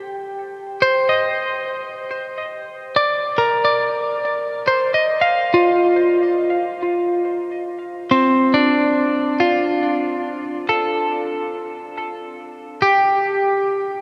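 In an unhurried, straight triple metre, this serene, melancholic ambient fragment, cut from a longer piece, features a solo twelve-string electric guitar, bright, twangy and clean, picked up front with tape echo between C4 and F5, moving from Cm7 to Csus24 at 5.5 seconds and a rootless Ebmaj7 at 10.7 seconds, all soaked in a huge, dreamy reverb with an 8.1-second tail, tuned to A4 = 441 Hz.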